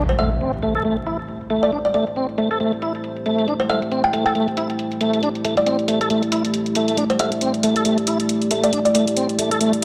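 The rhythm is a swung breakbeat at 137 BPM in 4/4, carried by an electronic hi-hat that is layered and overdriven, re-recorded in a large room and softened by low-pass filtering, with a filter sweep running across it from start to finish. An electronic impact hits at the very start and is gone by 1.3 seconds, setting an energetic, gritty tone in A minor over a single Am7 chord. Up front, a tonewheel organ plays a riff with key click, chorus vibrato and a fast rotary speaker, its full, clean tone pushed through tube saturation, digital delay and its own filter sweep. Beneath it, a dark analog pad holds detuned, wave-folded chords with a slow attack and long release, thickened by chorus and a sub octave and roughened by vintage 12-bit sampler grit. A woody kalimba picks out a short, airy melody from 0.1 to 9.0 seconds, colored by an old record sound and digital delay. The whole cut, lifted from a longer piece, sits in a lush hall reverb with vinyl crackle throughout.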